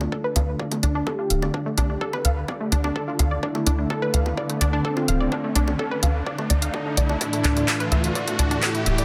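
A tight, punchy sequencer bass drives this melodic techno excerpt from the front of the mix, its nasal sawtooth and square-wave tone plucking and decaying quickly under a pumping sidechain at 127 BPM in D minor. Above it, a lush, detuned unison pluck spins arpeggios through a dub echo, while a bold analog pad adds sustained brassy stabs with chorus and vibrato, and a dark, round synth brass carries a soft, tape-tinged melody further back. A deep house kit of congas, handclaps and hi-hat sits alongside a deep electronic kick that stays in the background, both re-recorded in a small room. A very quiet, swarming granular drone on D creeps in at 1.3 s, and a riser joins at 3.1 s as the build-up climbs with filter sweeps, moving from a D power chord to A over D. The echo-heavy mix, bathed in an echo-chamber reverb, gives the passage a cinematic, melancholic pull.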